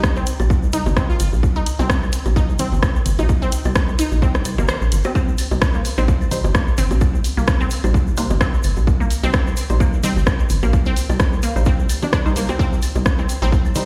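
A punchy, overdriven electronic kick leads this hypnotic, sparse minimal techno excerpt in C minor at 129 BPM with a 16th-note swing, dropping out briefly from 4.7 to 5.2 seconds, as a rubbery, hollow square bass pumps up front alongside an overdriven house kit of hi-hat and rim click, a grainy egg shaker, delayed bongos, claves and congas in the background, a squelchy, resonant blip pluck riff with chorus, phaser and delay, a fleeting, very quiet plucky unison lead note at 1.1 seconds, and muted dub chord stabs with chorus and delay entering at 6.0 seconds, all set in a stone room with light reverb as if played on a big sound system.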